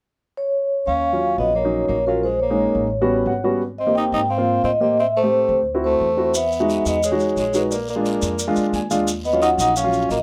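Afro-Cuban jazz at a driving 176 BPM with a sultry mood, led by a ringing, airy soft-mallet vibraphone melody with fast motor vibrato, paired with a growling, breathy tenor saxophone second line with scooped notes, over woody pizzicato upright bass and a dark, up-front upright piano that adds fills at 3.1 and 8.6 seconds through chords like Ebm9, Abmaj9 and Emaj9, while raspy guiro and grainy maracas join at 6.3 seconds in this rough home demo mix with moderate studio reverb.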